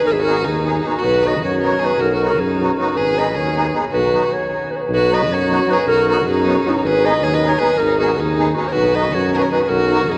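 Balkan folk in the spirit of a wedding band, festive and wild in 5/8 at 312 BPM counted in eighths, with a mellow clarinet carrying the melody over a rich, focused bowed violin second line, a warm, lightly vibrato tuba bass and a reedy, shimmering musette accordion accompaniment, all bathed in the long wet reverb of a church or concert hall, shifting between G#m and B in B major, with a full stop from 4.3 to 4.9 seconds before the opening phrase returns.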